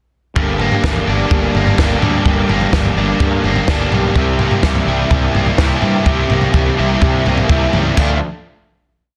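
A straight 4/4 pulse at 126 BPM drives this short, moody and cool indie rock piece, where a compact cocktail drum kit with a punchy kick, high-tuned snare, crash and grooving toms sits dark and smooth under an up-front fuzz guitar ringing chords through distortion and ensemble chorus, a bright overdriven electric guitar picking arpeggios, and a round, fuzzed fingered bass driving eighth notes as the harmony moves from Gm to C7 and lands on a final Dm chord at 8.0 seconds, with all parts stopping near 8.2 seconds in the dense, heavily limited mix with light reverb.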